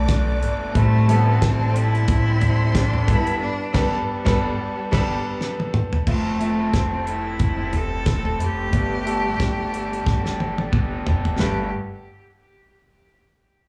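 A brilliant concert grand piano drives this hopeful piano-pop excerpt at 90 BPM in G mixolydian with a light swing, its polished chords carrying slapback echo alongside a biting, distant solo cello that bows the melody with vibrato through slapback and tape echo. A soft-attacked studio violin section plays a second line in the background until 5.1 s, while a crunchy overdriven electric guitar picks a riff through spring reverb, a woody pizzicato upright bass thumps below, and a damped 70s drum kit with fat snare and tight kick sits dry and up front. The band hits an accent from 3.4 s, drum fills mark the turns between sections, and the whole performance sounds like a live club gig heard through the venue's PA, with small-room ambience.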